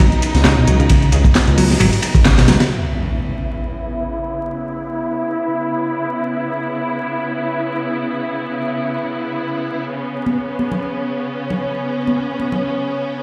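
This excerpt has the echoing sound of a big sound system in a bare stone room, with vinyl crackle over a light reverb. It is an energetic, funky breakbeat track at 133 BPM in C# minor, swung on the sixteenths. A crunchy, gritty breakbeat kit sits up front with dark cymbals, a high-tuned snare and a punchy kick, all filtered and rolled off at the top, while a tape-warm analog drum machine adds handclaps and hi-hat beneath it. A fat, detuned sawtooth bass and a bright picked electric bass riff with dub echo drive the opening, with congas in the background from 0.7 seconds. After a band accent at 2.3 seconds, the drums and basses stop at about 2.7 seconds as an electronic impact hits and the chord moves from C#7 to C#m7. That leaves the rich, bowed string section, pumping and filter-swept, to carry the rest, with the congas returning briefly around 10.3 seconds.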